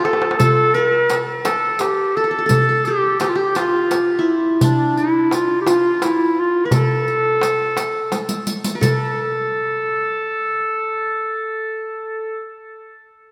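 Soaked in a lush, dreamy hall reverb, this hypnotic, soulful Arabic maqam ensemble piece in A bayati sways at 57 BPM in 6/8. A vintage, classical-style clarinet carries the melody up front with a touch of delay, while a bright-edged, fingerpicked qanun traces a second line beneath it. A soft-handed clay darbuka opens with a drum fill and a compressed, saturated jingling riq joins it at 0.4 s to keep time. A second fill leads into the new section, and both drums drop out at about 9.1 s, so the clarinet and qanun carry the rest of it on their own.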